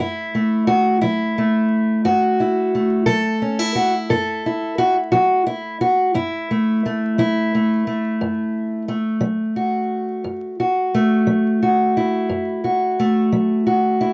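Acoustic country blues with a brooding, soulful mood, moving at a slow 59 BPM in a 12/8 metre with a straight feel, in F# minor. A lone fingerpicked steel-string acoustic guitar carries the whole piece from 0.0 to 14.1 seconds, ranging from F#2 up to A4. Its tone is dark and boxy, with a parlour-guitar character, and it sits up front in the sound. The harmony opens on an F#m7 chord in this short excerpt, cut from a longer piece. The sound is dry and close, in the manner of a 1970s studio recording, with a light touch of reverb and a layer of vinyl crackle.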